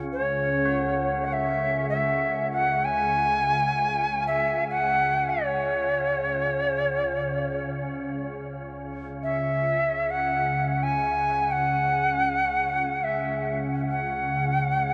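Bathed in a huge ambient reverb, this excerpt of haunting, spacious world meditation music drifts in free time in C# minor pentatonic, as a soft, organ-like drone pad with ensemble chorus sustains beneath an expressive, woody Native American-style cedar flute melody marked by chiff, vibrato and delay, while mellow, solemn tubular bells ring in the background from 0.7 to 8.8 seconds.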